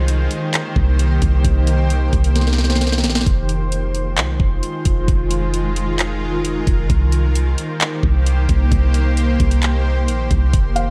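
Atmospheric cloud-rap hip hop with a hazy, ethereal half-time feel, where a detuned, warbling ambient pad with octave-up shimmer, chorus and sidechain pumping drifts over a round, sine-like 808 bass and an up-front trap kit of knocking kick, sharp snare, bright hats and handclaps carrying vintage 12-bit sampler grit, with a drum fill at 2.4 seconds and a mellow felt-muted upright piano, its action noise audible, entering only at 10.8 seconds as the cut ends.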